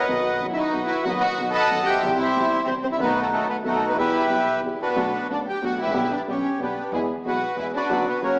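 A reedy, bright bandoneon carries the melody up front from the opening moment, over a dark, mellow baby grand piano whose worn, intimate tone comes with audible action noise and a short sustain. This tense, dramatic tango moves at 184 BPM in 3/4 with a rubato feel, starting in E harmonic minor and turning to B minor at 5.0 s. A very quiet string section adds expressive bowed stabs with vibrato and a smooth top, while a woody, thumpy pizzicato upright bass on gut strings sits in the background. At 0.5 s a violin section enters with a lush, even second line, bowed close with vibrato. The whole excerpt is bathed in a wet recital hall reverb and has a small-speaker sound.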